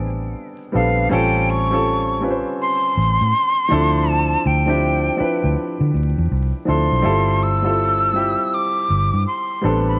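A warm grand piano and a dark, round, foam-muted electric bass with a punchy, amped tone open this smooth, late-night neo-soul R&B excerpt at 81 BPM, swinging gently on the sixteenths through Am11, A7alt, Dm9 and G13sus4. At 0.8 seconds a breathy, bright jazz flute enters up front with the melody, its crisp, chiffy attack and vibrato riding high over the accompaniment. Light reverb, studio ambience and a layer of vinyl crackle give the sound a vintage, intimate air.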